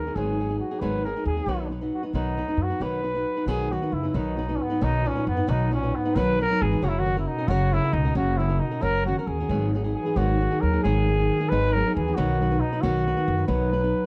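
Romantic and festive, this short passage of mariachi-style Mexican folk music moves in a straight 6/8 at 90 BPM in B major, cut from a longer piece. A mellow trumpet carries the melody up front, its soft attack and light vibrato giving a classical poise, though it sounds distant and roomy. Beneath it, a fingerpicked flamenco guitar with fresh strings supplies the accompaniment, while a woody, thumpy upright bass played pizzicato on gut strings anchors the low end. At 3.5 seconds a bass clarinet enters with a second line, its warm, classical tone sitting in the background. The harmony moves from G#m7 to B, on to F# and back through G#m7 to B, and the whole is captured in a dry, close 1970s-style studio sound with little reverb.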